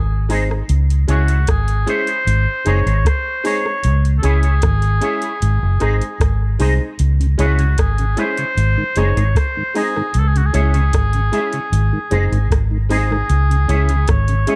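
Roots reggae at 76 BPM in C# harmonic minor, laid-back and hypnotic, this cut from a longer piece rocks between G# and C# minor as a vintage-toned oboe carries the solo melody through tape echo over a dark, foam-muted fingered bass and a soft analog rhythm box with a deep kick, metallic hats and rim clicks sitting up front. A bright, slightly detuned upright piano adds woody stabs while a clean picked guitar with an envelope filter, analog chorus and tape echo sits in the background. At 7.2 seconds a mellow tonewheel organ joins with chorus vibrato and a slow rotary speaker, all set in a digital ambience.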